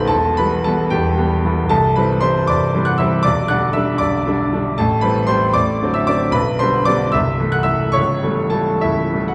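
Classical romantic character piece for solo piano in G major, lyrical and passionate, unfolding in 6/8 at 76 BPM with uneven, rubato beats, as a brilliant, up-front vintage grand with long sustain spans B0 to F#6 through chords moving from Em and Cmaj7 to Am7, D7/A and A7/C#, bathed in a wet recital hall reverb over this brief 9.3-second passage cut from a longer work.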